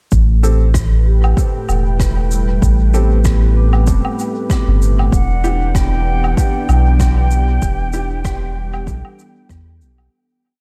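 Ambient dub with a meditative, deep mood, this short whole piece rests on a single Em7 chord and a gently swung groove, set in a dry space with little reverb. A soft, round sub bass sits up front with a mellow dub-style line, under a sawtooth analog pad whose detuned, chorused chords shift slowly. A deep, overdriven electronic kick lands softly and slowly, while a sparse, echoing beat of shaker, low woodblock and rim click rings out in a big room. A worn, woody upright piano adds occasional echoing chord stabs in the background, and a metallic vibraphone, entering at 1.1 seconds, plays three slow loops of unequal length that drift against each other. At 5.1 seconds an airy, distant concert flute brings expressive call phrases with vibrato, as the piece fades out from 6.8 seconds.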